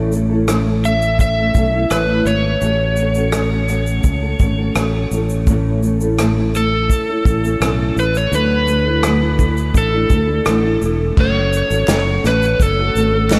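An overdriven slide guitar carries the melody from 0.9 seconds, its delayed line floating over a double-tracked, thumb-plucked nylon-string guitar, a punchy fingered electric bass and a distant, roomy unplugged drum kit played with bundle sticks, with a very quiet, crisp group handclap joining at 11.9 seconds, in this carefree, easy-going acoustic pop excerpt at 84 BPM, whose dreamy mix is soaked in huge ambient reverb as the chords move from A through F#m/A and Dadd9 to F#m.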